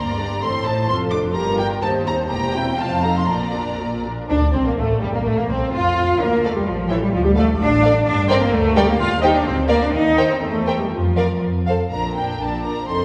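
Cheerful and spirited, this quick classical-period movement for string orchestra in Bb major moves in 2/4 at 117-132 BPM with a rubato feel, cut from a longer piece and settling back onto Bb at 11.9 seconds after a turn through D minor and G minor harmonies. Clear, focused first violins carry the melody with a smooth top while richer second violins trace a second line and clear violas fill in the accompaniment, all bowed with lush vibrato. Underneath, a bright, intense cello section and a rich, expressive double bass section sit up front on the bass, the whole ensemble heard from further back in a concert hall with a 2.2-second reverb.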